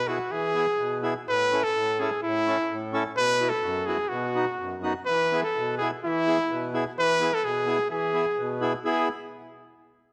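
Loose and rubato over a 2/4 pulse, this festive, bouncy alpine folk fragment, cut from a longer piece, puts a clear, classical-style solo trumpet with light vibrato and a smooth top up front on the melody, over a reedy, hollow, close-miked accordion giving dry, full accompaniment, with a moderate concert-hall reverb around the recording as the chords move from E to A, Bsus4 and B before landing back on E at 5.1 seconds.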